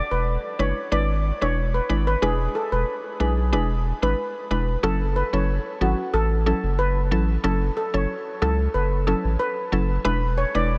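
A steel pan and a mallet-like synth pluck open this bouncy, hypnotic dancehall excerpt in F# minor, and a saturated sub bass joins at 0.1 seconds. The steel pan carries the melody with a metallic, shimmering tone, played on cello pans with medium rubber sticks and sitting up front with an analog delay trailing its notes. Beneath it, the synth pluck supplies the accompaniment in a woody, round voice built from FM and ring modulation, its quick, short-decaying hits bright and treated with chorus. The sub bass is deep and thick, a sustained sine pushed up front in the mix. At a steady 92 BPM in straight 4/4, the harmony moves from E7 to F#m7 at 4.8 seconds, where a new section begins, then returns to E7 at 10.0 seconds. Light reverb and a small-room ambience frame the parts.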